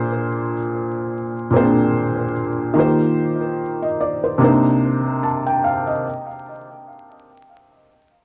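Hip hop in a melancholic, reflective mood, this short excerpt is cut from a longer piece and rides a slow, gently swung feel. A felt-muted upright piano plays alone from 0.0 to 6.3 seconds, its tone soft, mellow and intimate, sitting up front in the mix. The piano moves through rich, jazzy chords, from a Bb9 at the start to an Eb6 at 2.8 seconds and a Cm7 at 4.4 seconds, spanning from its low register up into its upper range. An analog delay trails behind the piano, adding a hazy echo to its hushed attack. Vinyl crackle and a moderate small-room ambience frame the performance, lending a close, lived-in atmosphere.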